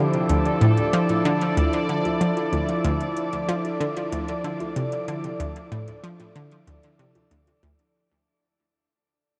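A sweeping, resonant pad holding a Dmadd9 chord carries this hypnotic, mysterious stretch of sequencer-driven ambient space music from its first moment. Its evolving sawtooth tone is thickened by chorus alongside a round, detuned analog pluck riff with delay in the low register. Behind them drift an airy, breathy wind-like tuned noise texture and electronic hi-hat and bongos with metallic hats and delay, both tucked into the background. A moderate shimmer reverb and a worn, warbling cassette-tape pitch drift colour the whole recording, which begins fading out at 1.1 seconds.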